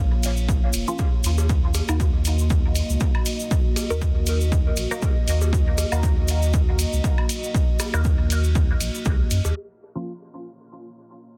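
Meditative and nocturnal, this excerpt of dub techno at 119 BPM in 4/4 with a light 16th-note swing rests on a round sine sub bass with tube saturation and a punchy, up-front electronic kick, while a dark, wave-folded analog pad with chorus holds sustained chords from Bbm to Ebm and back, nasal, detuned sawtooth chord stabs with phaser and dub echo flicker through the mix, a filtered analog drum machine supplies hi-hat and ride, grainy close cabasa and overdriven cowbell and woodblock with dub echo add texture, and the bass, pad, stabs, cowbell and woodblock all pump with sidechain before a filter sweep moves across the pad from 9.6 seconds to the cut at 11.4 seconds.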